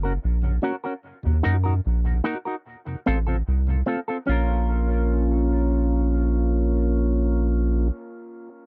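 A soft dub sub bass sits up front throughout, deep and round with a fast attack and sustained notes. Beneath and around it, a serious, hypnotic reggae groove unfolds in a straight 4/4 feel. An electric guitar with an envelope filter supplies dark, clean, fingered accompaniment, compressed and treated with analog chorus and dub echo. A mellow tonewheel organ adds flute-like tones with a touch of key click, turning slowly through a rotary speaker and also touched with dub echo. The harmony moves from Gb to Ebm and F, then settles on Bbm as a new section begins at 4.3 seconds. The dry, close sound recalls a 1970s studio, and this short passage is cut from a longer piece.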